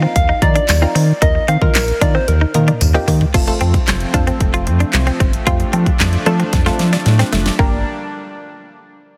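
A round, deep analog bass pumps up front beside a punchy, layered pop drum kit with a fat snare, handclaps, toms and two drum fills, driving this confident dance-pop excerpt. A gentle, warbling FM synth lead carries the melody only until 2.8 seconds, while detuned sawtooth chord stabs and a twangy, direct-recorded clean electric guitar riff with analog chorus run throughout, and a jingly tambourine sits in the background early on. From 3.3 seconds a shimmering, retro pulse-width pad adds sustained chords, and the mix carries light reverb, digital ambience and a heavily compressed radio sound.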